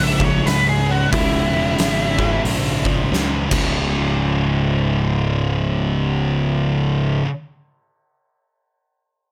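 Gritty, boomy and lightly reverberant, this brooding, ominous stoner-doom fragment opens with an octave-fuzz lead guitar soloing briefly over two thick fuzz guitar riffs, one up front and one in the background, a punchy fuzz-picked electric bass, and an oversized low-tuned drum kit with a fat snare and dark cymbals that plays from 0.2 to 3.6 seconds, including a fill before the shift from C#m to C#5.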